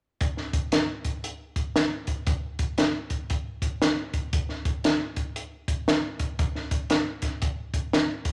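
A swung soul groove at 117 BPM in 4/4 rolls along on a compact cocktail drum kit, its hi-hat, punchy kick and high-tuned snare carrying a warm, joyful mood from 0.2 to 8.3 seconds of this short cut from a longer piece. The kit sits up front with a dark, smooth tone and a rolled-off top, while a moderate large studio reverb lends it space.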